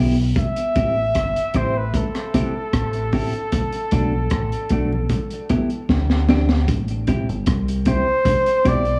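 Roots reggae at 76 BPM in 4/4 with a straight feel, this hypnotic, serious excerpt sits in A dorian and is cut from a longer piece. A deep, round fingered electric bass and a clean, compressed electric guitar with dub echo open at 0.0 s, the bass dark and punchy up front while the guitar carries the accompaniment. From 0.4 s a clear flugelhorn takes the melody with vibrato and its own dub echo, joined by a crunchy, saturated breakbeat kit with a high-tuned snare, punchy kick, rim click and hi-hat, its gritty tone rolled off at the top. Ringing, medium-tuned congas sit in the background, and a light small-room reverb surrounds the band. The chords move from Am7 through Bm7, Emadd11 and D7sus4, with a drum fill from 5.9 to 6.7 s leading into a new section that returns to Am7.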